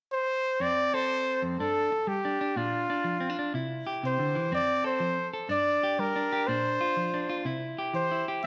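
Carefree and danceable, this highlife snippet in a straight 12/8 opens with a clear, close-miked trumpet singing a light-vibrato pop-style solo from 0.1 seconds, joined at 0.6 seconds by a dark, picked clean electric guitar comping through F, Gsus2, Bb and C changes, both up front in a wet echo-chamber reverb with small-room ambience.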